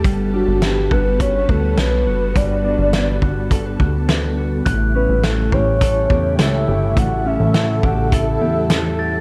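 Blissful and dreamy, this dream pop excerpt moves at 104 BPM in a straight 4/4, resting in A mixolydian as the harmony shifts from Gmaj7 to A7 at 4.7 seconds. An acoustic indie drum kit sits up front with a punchy kick, fat snare and hi-hat, its warm, rolled-off top, while a plucky analog bass carries the low end with a funky, wave-folded filter pluck. A dark, clean, fingered electric guitar plays arpeggios through subtle chorus, delay and shimmer reverb, alongside sustained chords from a vintage, organ-like ensemble string patch swirling with phaser and ensemble chorus. From 0.3 seconds a round, octave-layered synth lead sings the melody with vibrato, tremolo, delay and shimmer reverb. At 4.7 seconds a bell-like glockenspiel struck with rubber mallets joins high in the background, its ringing tones trailing off into delay and shimmer, all within a small room ambience.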